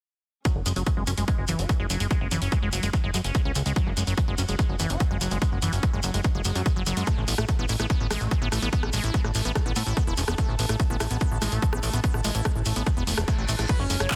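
A dense, heavily limited digital sound carries this alien, driving psychedelic trance excerpt in F# minor at 145 BPM, where an up-front overdriven kick, a layered techno kit of crash, handclaps, hi-hat and rim click, a grainy background shekere, a punchy, funky analog bass and a squelchy, resonant acid riff with phaser, delay and sidechain pumping run over very quiet sul tasto strings, until a reverse cymbal at 13.1 seconds ushers in a screaming, guitar-like synth lead and a barely audible morphing wavetable pad at 13.7 seconds.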